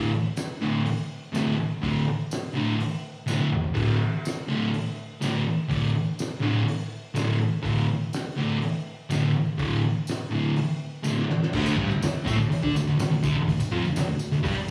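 A thick, fuzz-drenched electric guitar leads this raw, menacing garage rock excerpt, picking a dark, double-tracked riff around a D5 chord that sits up front with distortion and slapback echo, spanning D2 to D4. At 124 BPM in a straight 4/4, a cloth-damped acoustic drum kit brings a muffled, lo-fi thud of tight kick, fat snare, toms, hi-hat and crash cymbals, saturated and gritty with a rolled-off top in a small room. A jingly tambourine rattles in the background alongside the kit. Drum fills at 3.3 and 11.1 seconds mark the phrases, and from 11.5 seconds the music moves into a new passage with the chord falling away for the final moments. The sound is that of a live club gig heard through the venue's PA, wrapped in a lush hall reverb.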